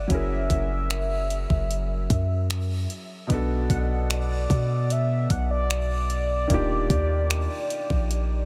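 Contemporary R&B in a tender, romantic mood, cut from a longer piece, where a round, horn-like synth lead with chorus, vibrato and tape echo carries the melody over a soft, felt-muted upright piano, a deep, boomy 808-style bass up front, and a thumpy, overdriven 80s drum machine of finger snaps, hi-hat and kick, while a glassy, crystalline wavetable pluck glints briefly in the background from 3.7 to 5.4 seconds, all in light reverb.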